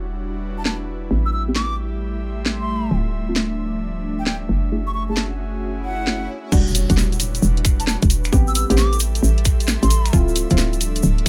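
A breathy pad and an ethereal, detuned pad open this excerpt of bouncy, skippy two-step UK garage at 133 BPM, both pumping against the sidechain, over a hollow, knocking FM bass that sits up front with a punchy, fast-decaying attack. A bright, wooden baroque flute carries the melody from 0.6 s with a straight, tongued tone trailed by tape echo, while the garage kit enters with a cracking snare, finger snaps, warm hats and crash, swung on the sixteenths. Deep, dark chord stabs with a warbling vintage character and a filter sweep join at 1.1 s, moving through minor-ninth chords from Em9 to Am9, Dm9 and F#m9. An electronic swell in the background builds into the drop at 6.5 s, where an impact lands alongside a tight electronic kick and a grainy tube shaker, as the progression returns to Em9. A light reverb frames the mix.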